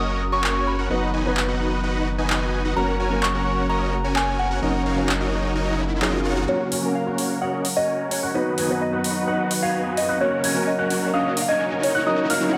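A soft FM synth bell carries the melody over a muted, intimate felt upright piano, an airy unison pad and huge, detuned supersaw chords with a low-pass filter and dub echo, all resting on a deep, saturated sine sub bass in this anthemic, euphoric festival progressive house cut at 129 BPM in F# major. A big-room electronic drum kit with overdriven handclaps and metallic hi-hats drives the straight 4/4 groove, and a background riser comes in at 3.9 seconds. At 6.5 seconds the sub bass drops out and a clear concert grand plays high arpeggios in the background, as filter sweeps on the supersaw and grand piano push a build-up through the cycle of F#, B/F# and D#m7/F# chords.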